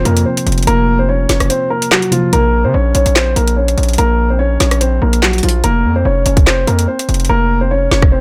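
A distorted, saturated 808-style bass anchors this ominous, tense half-time drill excerpt, its heavy, aggressive tone sitting up front beneath a dark, mellow baby grand piano melody. Soft, muted synth keys with chorus add an intimate, full-bodied accompaniment until 2.4 seconds. An electronic drill kit of hard-clipped kick, woody snare, metallic hi-hats, rim click and handclaps pushes the music along in a digital ambience, with the kick dropping out briefly at 1.5 seconds and the hi-hats falling away at 7.3 seconds as the chords move from Fsus4 to Bbm and back.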